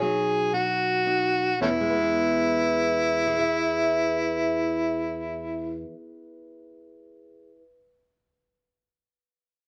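Dark studio production with moderate reverb frames this short cut from a longer acoustic country blues in E major: swaggering and laid-back, at a slow 36 beats per minute in 12/8 with a straight feel. Up front, an amplified, gritty, overdriven harmonica carries the jazz-style solo melody with light vibrato and tongue slaps until 5.8 seconds, while a fingerpicked steel-string parlour guitar with old strings gives woody, boxy accompaniment until 7.6 seconds. The opening 1.6 seconds slow down on a B chord before the music settles onto E.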